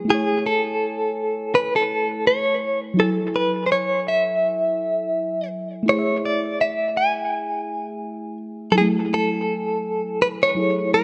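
A relaxed 83 BPM groove in 4/4, swung at 58% on the sixteenths, gives this short R&B passage in A major its smooth, dreamy sway, with the tuning set slightly low at A4 = 436 Hz. A mellow FM electric piano carries the accompaniment from the start, its soft, round, dark tone with a fast attack and decaying notes, a noise layer, and chorus, phaser and analog delay sitting up front between F#3 and G#5. At 0.1 seconds a clean, direct-recorded electric guitar takes the melody, picked and compressed, ranging from G#4 to G#5, with tremolo and analog delay colouring its tone. The harmony moves through Amaj7, F#m9, A5 and back to F#m9 over about 11 seconds. A moderate echo chamber reverb with a 1.9-second decay gives the whole mix a spacious, echo-heavy glow, and the passage is cut from a longer piece.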